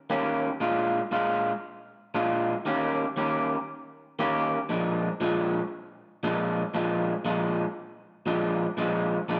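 An electric guitar played through a small old amp carries this short swaggering, gritty blues fragment on its own, entering at 0.1 seconds and playing through to 9.4 seconds. Its picked, twangy tone is slightly broken-up and sits up front, with a spring reverb on the guitar. The tempo is 117 BPM in 4/4 with a swung eighth-note feel, set in Bb mixolydian and tuned a little flat at A4 = 438 Hz. The solo ranges from Bb2 to G4 over a simple change between Eb7 and Bb7. A moderate echo-chamber ambience surrounds the performance, lending the lone guitar a roomy halo as it is cut from a longer piece.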